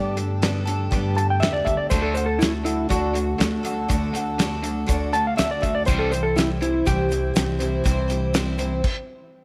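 A straight 4/4 groove at 121 BPM from a dry, up-front 70s drum kit with a fat snare and tight kick anchors this nostalgic, open-road folk and heartland rock fragment in C major, where a dark, clean lap steel slide solo carries the melody over shimmering, octave-doubled twelve-string acoustic picking, woody pizzicato upright bass, a biting, double-tracked overdriven guitar riff in the background, a very quiet, flute-like tonewheel organ through a rotary speaker, and a grainy egg shaker entering at 1.9 seconds, moving from Gadd9 to D to C in light studio reverb before the band stops at 8.8 seconds.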